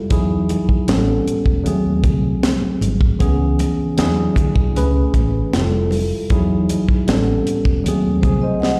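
Lush 1970s-style soul with a cinematic, silky mood, built around a worn, slightly out-of-tune tine electric piano, lightly overdriven and up front with plate reverb and slapback echo, over dark, round, foam-muted fingered electric bass, a tight, dry funk kit with a high-tuned snare, and thick-skinned congas with slapback echo sitting in the background, all heard like a live gig through a venue's PA with recital-hall reverb, before a ringing, metallic vibraphone slips in at 8.2 seconds and a drum fill lands at 8.6 seconds.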